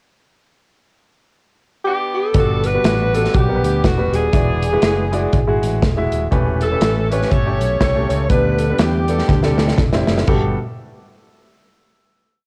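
This short, complete uptempo gospel piece has a reverent, hopeful mood and a swung feel. It opens with a pickup as a breathy, mellow alto saxophone enters at 1.8 seconds, joined a moment later at 1.9 seconds by an edgy, close-miked saxophone section, both playing jazz-style, motif-based call phrases with light vibrato, the soloist's subtone sitting in the background. At 2.3 seconds the breakdown begins, and the band arrives: a clear, polished baby grand piano with rhythmic drop-2 chords and grace notes, a bright, punchy fingered electric bass walking and running with chromatic approach notes, and an up-front studio drum kit driving a two-beat praise groove with a punchy kick, medium-tuned snare, hi-hat and crash in a pumping room. The piano and drums carry a cassette tape colour, and the whole take has the small-room ambience of a home recording on cassette. Rich extended harmonies such as Gmaj9, E9 and A9/E move toward a D7sus4, where a drum fill at 9.3 seconds leads into a sustained final Gmaj9 chord.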